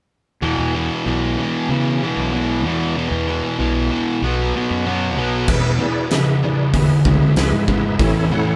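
A thick, double-tracked fuzz guitar riff and a dark, round overdriven fingered bass open this swaggering, raunchy blues rock and southern rock excerpt at 95 BPM in E mixolydian, before a reedy tonewheel organ with fast rotary speaker and chorus vibrato holds sustained chords and a huge arena drum kit with a fat snare and punchy kick crashes in at 5.5 seconds, all captured as a band playing live in one room.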